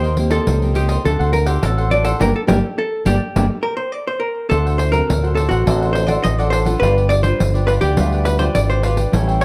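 Up front, a dark, clean hollow-body jazz guitar carries the melody, its picked, compressed tone trailed by tape echo, in this yearning, nostalgic samba and choro passage cut from a longer piece. Beneath it, a fingered electric bass sits just as close, bright and direct through an envelope filter, while a crisp picked cavaquinho and a deep, fingerpicked classical nylon-string guitar fill in the accompaniment. A jingly pandeiro, close and dry, drives the straight 4/4 feel at 104 BPM. The harmony moves through Cm7/Eb, D7 and Gm, and the band hits a shared accent from 2.2 to 4.5 seconds before the second section returns to D7 and turns to G7. A moderate studio reverb and a dark, warm production give the whole ensemble a mellow, roomy glow.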